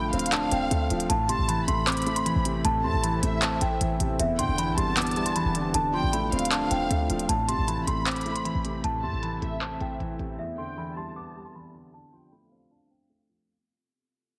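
Melancholic and brooding, this short half-time trap and hip hop cut at 155 BPM in A minor sets a delicate, bell-like celesta melody over a lush violin section, both carrying tape echo, while a worn, intimate grand piano with audible action noise sits up front on accompaniment, cycling through Dm7, Am and Em7. A crisp electronic trap kit with handclaps and hi-hats drives alongside a punchy, tight 808-style bass until about 10.4 seconds, and a deep, moody pad with chorus enters in the background at 2.4 seconds. The whole mix has a heavily compressed, low-passed radio sound in a small room, and the second half at 7.3 seconds brings a filter sweep and a fade-out.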